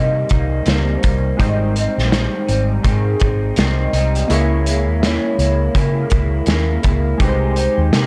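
Indie pop with a bedroom-pop haze, this laid-back excerpt moves at 83 BPM in 4/4 with a swung sixteenth-note feel in Ab major. A hollow, woody clarinet-like synth lead carries the melody, its soft, sustained square-and-triangle tone thickened by a sub octave, a noise layer, vibrato and a lush chorus. Behind it, glossy retro synth keys sit in the background, blending detuned pulse and sawtooth waves with a filter sweep, tremolo and a cassette-tape character. An electric guitar through a small old amp adds a slightly broken-up, lo-fi, compressed layer, with analog chorus and a warbly pitch drift. A foam-muted, round vintage bass sits up front, and a loose acoustic drum kit with punchy kick, medium-tuned snare, hi-hat and a pumping room sound enters at 0.3 s. Over a hazy Cm7, Abmaj7, Dbm6 progression, the dark production and small-room reverb give the whole a warm, intimate glow.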